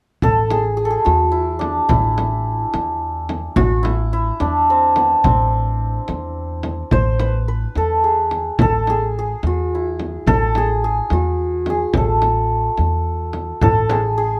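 Set in six-eight metre with a straight feel, this short cut from a longer Persian modal piece moves at an unhurried, soulful pace, full of longing. The santur carries the melody up front from 0.2 seconds, its hammered strings shimmering and ringing in the avaz esfahan mode. Beneath it an upright bass plucks low, dark, woody notes on gut strings, thumpy and close in the mix. A deep, large frame drum played with hard hands sits close through the passage, and a tight, band-limited tombak slips in from the background only at 13.6 seconds, just before the fragment breaks off. The parts share a small, wet room reverb that gives the ensemble an intimate, lived-in sound.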